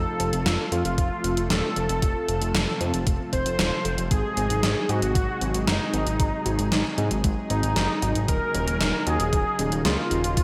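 A bold, thick unison lead carries the melody from the start, its bright, wave-folded sawtooth tone colored by vibrato, subtle chorus and digital delay. This driving, nostalgic synthwave excerpt moves at 115 BPM in a straight 4/4, cut from a longer piece and built on the chords F, Ab7 and Ebm7. Beneath the lead, a fat analog bass sits up front with a warm sawtooth tone and pumps to the sidechain. A lush, detuned pad holds sustained chords in the background, and a soft, round pluck adds very quiet, dark arpeggios with a moving notch. A gated 80s drum machine enters at 0.2 s with hi-hat and an overdriven gated-reverb snare, and an overdriven, thumpy electronic kick joins at 1.0 s. The bright 1980s-style digital production places it all in a moderate hall reverb.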